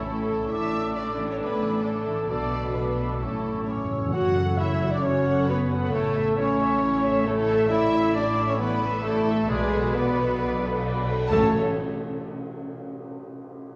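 A cinematic, heroic adventure film score at 133 BPM in A major, this fragment of a longer piece feels adventurous and triumphant as it moves through chords such as Dsus2/A, Bm7 and F#m. Bowed violin sections carry the melody and a second line in the background with smooth vibrato, while a hollow flute section adds a soft high line that stops at 4.1 seconds, and a mellow solo cor anglais and a very quiet, distant clarinet weave further lines. A lush viola section supplies rich, focused accompaniment, the French horn section holds tight sustained chords in the background, and a ringing, fingerpicked concert harp plays arpeggios until 13.1 seconds. Woody double basses and distant cellos anchor the bass, timpani struck with hard mallets add a fill from 3.2 seconds and a final accent, and a bright, dry cymbal swell and tam-tam enter at 7.7 seconds. The whole sits in a wet scoring-stage reverb with small-room ambience, colored by worn, warbling cassette tape and a drifting pitch.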